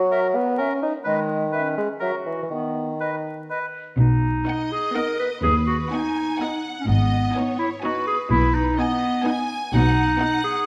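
In a straight 3/4 at 126 BPM, this playful, magical film cue in B major opens with an up-front, clear, vintage-toned clarinet and a mellow bassoon, joined briefly by a pure, metallic flute in the background and a lightly vibrato oboe; at 4.0 s, focused cello and double bass sections enter, and at 4.5 s a lush viola section and two violin sections join above them, one rich and smooth-topped, the other carrying an expressive, background melody with vibrato and portamento, the whole quirky cue set in a reverberant scoring-stage space with a layer of vinyl crackle.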